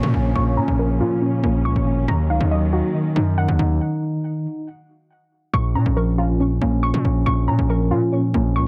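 A distorted, saturated 808-style bass sits heavy and up front in this tense, ominous half-time hip hop excerpt at 139 BPM in Bb minor, joined by a mellow tine electric piano, a warbling lo-fi pluck playing detuned arpeggios through chorus, tape echo and a filter sweep, dark bowed symphonic strings holding distant, lush chords until 3.8 seconds, and a faint electronic downlifter in the background, all in a dense, dry, heavily limited mix over Bbm and Ebmadd9 chords.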